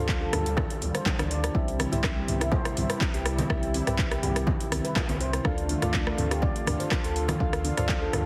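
Hypnotic and warm, this short afro house cut from a longer piece rides a straight 4/4 pulse. A punchy, layered electronic kick anchors the groove alongside an up-front afro-pop kit of handclaps, metallic hi-hats, rim clicks and toms, both carrying a small-room ambience, while bright acoustic congas sit distant in the background. A round, sine-like sub bass pumps under sidechain compression, as does a smooth, warbling vintage pad of detuned sawtooth tones with subtle chorus. Over this, a ringing, meditative handpan plays delayed arpeggios with soft fingertips, and a dark, nasal chord stab with a sub octave, filter sweep, chorus and delay decays quietly behind it. The harmony moves from Dm to C at 1.5 seconds and returns to Dm at 5.5 seconds, all under light reverb and a heavily compressed, radio-like finish.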